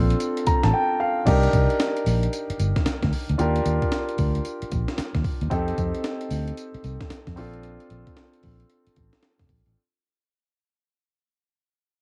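New jack swing R&B with a flirty, upbeat swung feel, this short excerpt pairs an intimate concert grand piano, whose action noise and long sustain sit up front, with a dark, foam-muted, punchy electric bass and a gritty, compressed, pitched-up breakbeat kit of thumpy kick, snare, hi-hat, tambourine and crash carrying a tape-softened grain, all in a lightly reverberant home cassette recording where a piano fill from 0.2 to 1.3 seconds overlaps a silent gap from 0.7 to 1.3 seconds before the whole groove fades out over chords moving from Cm7 through Ebmaj7 and F7 back to Bbmaj7.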